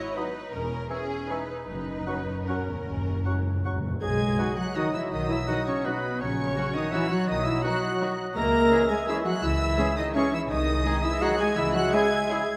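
Sweeping and festive, this orchestral ballroom waltz in 3/4 moves with a rubato lilt, heard as a short cut from a longer piece. Muted violins carry the high melody with a dark, veiled, con sordino tone and lush vibrato, while a second muted violin section and soft violas fill the inner voices, and muted cellos and double basses anchor the bass. Around them, an airy, close-miked concert flute, a warm oboe, a mellow clarinet and a smooth bassoon add gentle second lines and accompaniment, with a very quiet French horn section holding sustained chords. Timpani struck with soft mallets play a round fill from 1.7 to 4.0 seconds, and at 4.4 seconds a distant trombone section joins with sustained chords while a clear, roomy trumpet adds stabs. The whole ensemble sits in a generous scoring stage reverb that gives the dance a glowing, spacious sheen.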